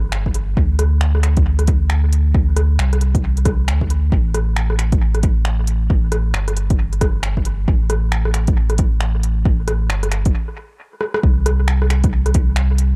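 An echo-heavy mix with the soft grain of cassette tape and little reverb opens this short cut from a longer future garage piece, nocturnal and ghostly in mood. At 135 BPM in 4/4, with a 61% swing on the sixteenths, a deep, round sine sub bass sits up front from the first moment, its fast attack and sustained notes moving between G1 and D2 through tube saturation and sidechain pumping. An overdriven, layered electronic kick, punchy and forward in the mix, enters at 0.3 seconds. Around it, a lighter organic electronic kit of finger snaps, crisp hi-hats and rim clicks, tape-softened and re-recorded in a small room, trails dub echo behind it. The groove halts for a stop between 10.3 and 11.2 seconds, a drum fill lands at 11.0, and a brief new section carries the track to its cut at 13.0 seconds.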